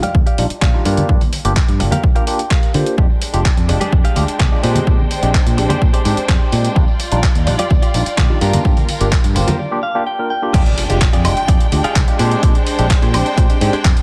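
A bright, clean electric guitar riff, a gritty, sampler-style drum kit of hats, claps, crash and woodblock, and ringing background congas and tambourine open this funky, groovy filtered disco house cut at 127 BPM in F dorian. They are quickly joined by a punchy, up-front electronic kick, a bright fingered bass and a barky phased electric piano, with everything but the kick pumping under a filter sweep. A lush, bowed violin section enters with sustained chords at 3.0 seconds, the hand percussion stops at 9.6 seconds for a brief break with guitar fills, and the drop lands at 10.5 seconds with a very quiet electronic impact over the cycle of Ebmaj9, Gm7, Fm69 and Bb13 chords.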